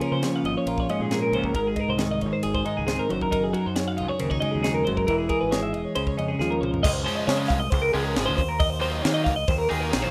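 Two twangy, clean twelve-string electric guitars sit up front in this short cut from a longer math rock and midwest emo piece: one plays a compressed accompaniment while the other picks high arpeggios. The feel is bright and playful, at 136 BPM in a straight 4/4 in Db major, moving through chords such as Db6, Gb69, Emaj7 and Dbmaj7. A crisp fusion drum kit with a high-tuned snare and punchy kick plays throughout with an airy studio-room sound, while a growling, overdriven fingered bass runs underneath. After a drum fill at 6.4 seconds the music moves into a new section, where a bright, double-tracked stack guitar enters at 7.1 seconds with an overdriven riff and the accompanying twelve-string stops at 7.7 seconds. The whole thing has the rough, dry character of a home demo mix with little reverb.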